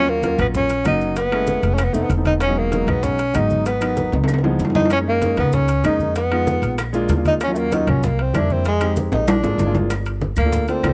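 A breathy, whispered tenor saxophone sits up front in this sophisticated, fiery Afro-Cuban jazz excerpt, carrying the melody with scooped notes and vibrato before moving into a solo at 9.9 seconds. A short-sustain grand piano supplies the accompaniment while a woody pizzicato upright bass stands prominent beneath it. Low-tuned congas, ringing metal-shell timbales, very quiet tight bongos, grainy maracas and distant claves fill out the percussion, with drum fills at 4.1 and 9.1 seconds, all captured in a dry, close 1970s-style studio sound.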